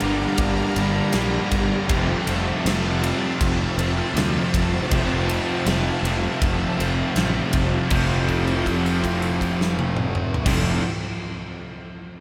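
A huge acoustic arena drum kit sits up front in a pumping hall, with bright cymbals, a punchy kick, a medium-tuned snare, toms, crash and ride carrying this wistful, blissful shoegaze and dream pop excerpt in a straight 4/4 feel. Behind it, three picked guitar riffs stack into a dense wall: a thick, dark fuzz guitar with subtle chorus, a dark overdriven electric guitar trailed by reverse reverb, and a warm, double-tracked raw garage guitar with overdrive. A round, fuzzed fingered electric bass, direct and amped with overdrive, anchors the low end. A swirling vintage string machine with a sawtooth tone, slow attack, ensemble chorus and phaser holds bright sustained chords in the background as the harmony moves from Gm7 to Fmaj7. At 7.9 s the music shifts into a new section, where a held note rings until 10.5 s. The whole dreamy mix is soaked in a vast ambient reverb, and the drums stop at 10.6 s as the other parts sustain to the cut.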